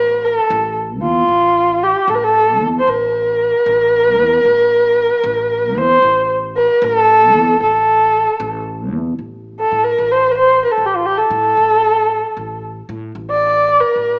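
Persian modal ensemble music in 6/8, hypnotic and longing, where a dark, smooth-topped kamancheh sits up front, bowing the melody with vibrato and portamento over a softer, growly pizzicato upright bass with a woody steel-string tone, both playing throughout this 14.2-second fragment of a longer piece, set in a moderate recital-hall reverb with a small-speaker sound.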